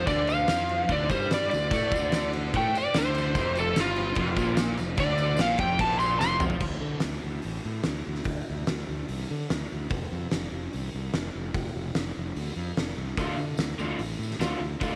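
Swaggering and menacing, this garage rock excerpt in D minor drives along at 146 BPM, opening with a bright, up-front overdriven slide guitar solo over a raw, double-tracked garage guitar riff, a round, fuzzed fingered bass and a faint, jingly tambourine. A drum fill at 6.2 seconds leads the oversized, low-tuned kit, with its boomy kick, fat snare and dark cymbals pumping in a stone room, into a stretch carried by drums and bass alone. The guitar riff and tambourine return at 13.2 seconds, all in a small room with light reverb.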